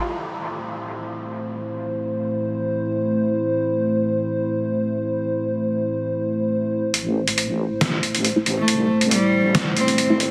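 A dark, moody analog pad opens this deep dubstep excerpt in A minor, holding sustained chords under a filter sweep with ring-modulated, detuned edges and a slow attack, all bathed in huge ambient reverb. At 6.9 seconds the half-time 138 BPM build-up begins as a soft, sine-rounded wobble bass with tube saturation arrives alongside a gritty, pitched-down sampler-style kit of filtered hi-hat and snare. A muted, phased dub chord stab follows in the background, and a clear, nasal cello played sul tasto floats up front at 8.6 seconds, trailing dub echo over the meditative gloom.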